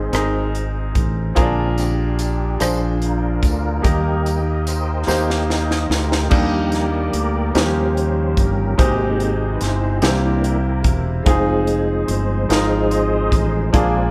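Slow gospel in 6/8 at 48 BPM in Eb major, reverent and soulful, where a clear tonewheel organ through a slow rotary speaker with chorus vibrato carries the solo over a brilliant, woody upright piano, a growly fingered electric bass and a crisp fusion drum kit with a high-tuned snare and punchy kick, while a jingly tambourine sits in the background from 1.8 to 6.3 seconds, a drum fill arrives at 5.1 seconds, and the chords move from Ab and Bb7 to Ebmaj7, Abmaj7, C7 and Fm7 in a large studio room.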